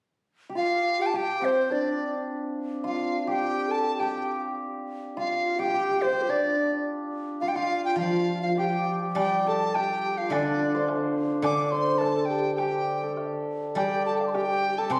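A shimmering hammered dulcimer opens this pastoral, festive Chinese traditional chamber excerpt at 0.5 s in G shang mode, quickly joined by a bright, buzzing large dizi carrying the melody and a mellow, expressive low xiao adding a second line with vibrato, all moving in a rubato 2/4 around 105 BPM, before a silvery steel-string zither played with fingerpicks enters at 8.0 s and a very quiet, dry woodblock arrives with the new section at 9.2 s, the whole ensemble captured by phone in a reverberant recital hall.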